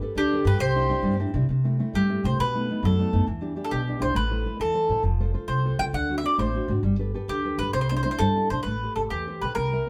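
A wet, live-in-one-room studio sound surrounds this short cut from an Italian folk serenade in C major, moving at 134 BPM in a straight 6/8 with a passionate, wistful mood. Up front, a round, double-strung mandolin carries the picked melody over fingerpicked, full-bodied nylon-string guitar, which slips in a brief fill around 1.0 seconds, while a woody, growly pizzicato upright bass anchors the low end. A rich, focused solo violin with vibrato adds a bowed second line only from 0.2 to 1.2 seconds, and the chords travel through a wistful cycle from Gadd9 and Cadd9 to B7, Em7, D7 and finally Am7.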